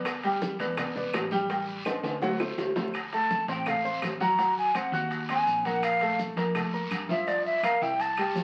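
Afro-Cuban jazz at a driving 166 BPM in 4/4, this short cut from a longer piece has a sultry mood and the worn sound of a very old 78 rpm record, complete with vinyl crackle and a wet studio reverb. A warm baby grand piano sits up front with the accompaniment, while a dark, round fretless electric bass with a woody, hollow-body tone anchors the low end. The percussion section fills out the groove: ringing metal-shell timbales heard from a distance, low-tuned congas with a thick, damped skin, tight high-tuned bongos that drop out after 2.8 seconds, raspy guiro, woody band-limited claves, and grainy maracas kept in the background. A drum fill leads into the second section at 2.9 seconds, where a breathy, mellow silver concert flute takes a solo close-miked and up front, its straight, tongued tone slightly unsteady. The harmony moves through jazzy changes such as Am7b5, D7, Dm7 and G#9 before settling on Gm7.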